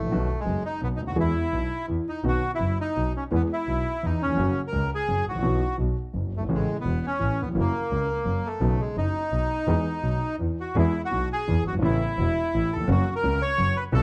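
Passionate and playful, this short tango passage in E major moves at 170 BPM in a rubato 3/4, with a reedy, up-front bandoneon carrying the melody over a dark, mellow grand piano whose action noise and deep bass lend a vintage intimacy, while a single bowed double bass, clear and distant with vibrato, anchors the low end, all set in a moderate large-studio reverb with a dark production as the music shifts into a new section at 10.8 seconds.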